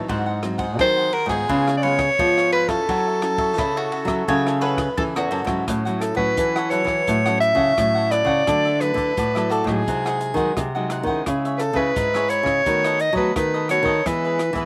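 Samba and choro with a lively, sunny mood, where a clear soprano saxophone carries the melody up front with light vibrato and a soft attack over a bright, crisp cavaquinho, a fingerpicked nylon-string guitar, a second nylon-string guitar with fresh strings and finger squeak on the bass line, and a dark, smooth jazz drum kit with a boomy kick, while a woody double-strung mandolin adds a brief second line from 3.6 to 5.6 seconds, all captured dry outdoors.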